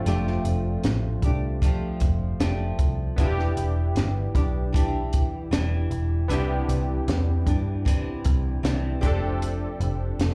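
Dreamy and sunny, this short excerpt of indie bedroom pop at 77 BPM in F lydian pairs a bright, fingerpicked nylon-string guitar drenched in lush chorus and warbly pitch drift with detuned sawtooth analog keys run through cassette tape, both washed in plate reverb and slapback echo, over a round, foam-muted picked electric bass and a compact cocktail drum kit with a high-tuned snare and punchy kick sitting up front, all heard as a live club gig through the venue's PA while the chords move from F69 through Em7 and Cmaj9 back to F69.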